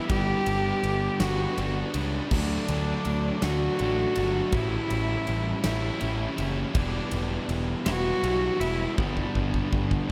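Cinematic and cathartic, this post-rock passage in a slow 6/8 features a rich, biting cello with light vibrato and an airy bow carrying the melody through an analog delay. It sits over a double-tracked, overdriven electric guitar riff and a punchy fuzz bass, both up front, as the chords move from Gmaj7 through D, A7 and Em7 back to G. A huge arena drum kit with bright cymbals and a punchy kick drives the passage and closes it with a fill at 9.0 seconds, all set in a dreamy mix soaked in plate reverb.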